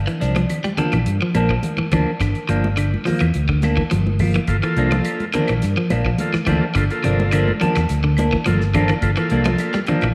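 A dark, round fingered electric bass opens this funky, driving afrobeat excerpt at 106 BPM on a single Gm7 chord in G dorian, joined at once by slightly broken-up picked guitar arpeggios, a dry damped 70s drum kit with a fat snare and tight kick, and up-front clean guitar stabs colored by a phaser. Ringing, high-tuned congas played with soft hands and woody claves sit in the background. A reedy combo organ with light vibrato enters at 4.5 seconds, all of it set in a wet echo chamber.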